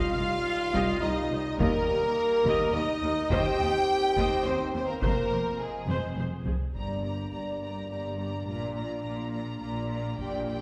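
This epic orchestral film score moves at 105 BPM in a straight 3/4, with an epic, relentless mood that begins in C minor and shifts toward G minor at 6.8 s, cut from a longer piece. Two bowed violin sections carry the melody and a second line that sits in the background, both smooth and even with vibrato, while a rich viola section fills in the accompaniment beneath them. A distant French horn section holds sustained chords prominently throughout, joined by a very quiet, mellow trombone section whose tight chords stop at 6.5 s. From 0.2 s, focused cellos and a soft-attacked, expressive double bass section anchor the low end, and a taiko ensemble struck with heavy sticks enters at 0.7 s, playing a drum fill just before the shift to G minor. The harmony moves from Cm through Eb and Fm before settling on Gm and Bb, and the whole ensemble sits in a wet, hall-like reverb that lends the orchestra a grand, spacious sheen.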